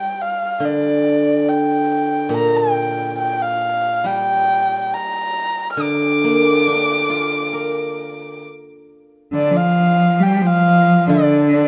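The rhythm is free and rubato, loosely held around 69 BPM in 4/4, giving this short cut from a longer Chinese traditional chamber piece a wistful, tender, unhurried feel in the D jue mode. A dark, intimate erhu carries the melody high in its range, one close bowed voice with light vibrato, soft attacks, gliding portamento and an airy bow tone. Beneath it, a steel-string zither played with fingerpicks supplies the accompaniment throughout, its silvery, ringing acoustic notes sitting up front alongside the erhu. At 9.3 s a rich, focused cello enters with a second line in its low register, a single bowed player with vibrato and a smooth top that deepens the texture through to the end at 11.7 s. The recital hall reverb, with a decay of 1.7 s, wraps the ensemble in a moderate, darkly mellow space.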